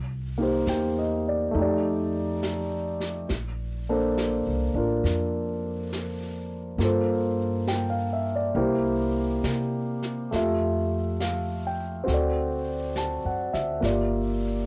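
A warm concert grand piano, up front with deep bass and long sustain and carrying a cassette-tape character, provides the accompaniment in this tender, romantic jazz ballad in F major at 68 BPM, swinging gently in 4/4 through chords such as Cm7, Bbmaj9, Gm11 and Fmaj9. A woody, pizzicato upright bass with steel strings opens the piece at 0.0 seconds and sits close in the mix, while the piano enters at 0.4 seconds and a brush drum kit joins at 0.7 seconds, its medium-tuned snare and hi-hat set back in a small room. Light reverb and the intimacy of a home cassette recording frame this short cut from a longer piece.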